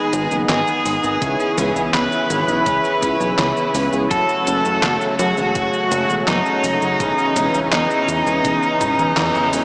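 A distorted, high-gain lead guitar sits up front carrying the melody, its tone bathed in a diffuse ambient delay, in this driving, nostalgic synthwave excerpt at 83 BPM in C# minor. Beneath it, a lush, warbling unison pad holds sustained chords with chorus, vintage 12-bit sampler grit and sidechain pumping. Analog synth brass adds fat, nasal stabs, and a very quiet soft synth bell traces a pure, gentle second line above. A glossy chorused synth bass with sidechain pumping enters at 0.1 seconds, alongside a detuned 8-bit digital drum machine playing cabasa, handclaps, hi-hat, a medium-tuned snare and toms. A thumpy electronic kick sits in the background from 1.2 seconds, and a very quiet, double-tracked cranked stack guitar plays an overdriven riff underneath. The chords move from G#m through C#m7 and F#madd9 to C#m7/E, with a drum fill from 8.8 seconds leading into a band accent, all in a dreamy mix soaked in cathedral reverb with a small-speaker sound.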